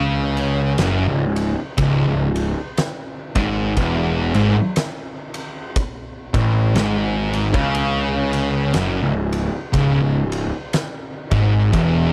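Stoner and doom metal at a slow 60 BPM in C# minor, this hypnotic, brooding excerpt rests on a single C# minor chord, with a swung eighth-note feel and tuning a hair below standard. Two thick, distorted fuzz guitars grind out the riff, one up front and one sitting in the background, while an overdriven, growly picked electric bass with a bright, direct edge stands up front beneath them. An oversized, low-tuned acoustic drum kit enters at 0.4 seconds with a punchy kick, fat snare and dark ride cymbal, its gritty, saturated sound pumping in a big room, though the overall mix carries little reverb.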